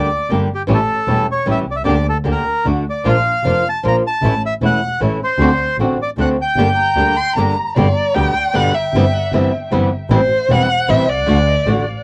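A reedy, bright bandoneon opens this tense, sultry tango fragment up front and dry, singing the melody over fingerpicked flamenco guitar, a bowed double bass played sul tasto with an airy, intimate tone and light vibrato, and a distant studio string section placing pure, floating stabs in the background. The pulse falls in three and moves with a loose, rubato feel, tinted by the character of a home cassette recording in a booth. A single violin enters at 6.8 seconds, and the bandoneon and string stabs drop away shortly after. From 7.8 seconds the music brightens into a major-key passage as the violin takes a solo, warm and expressive with vibrato, portamento and a trail of analog delay, sounding distant yet still up front. Beneath it the acoustic guitar keeps up its accompaniment, finger squeaks audible on the strings, while the bass holds the low end until the piece is cut off.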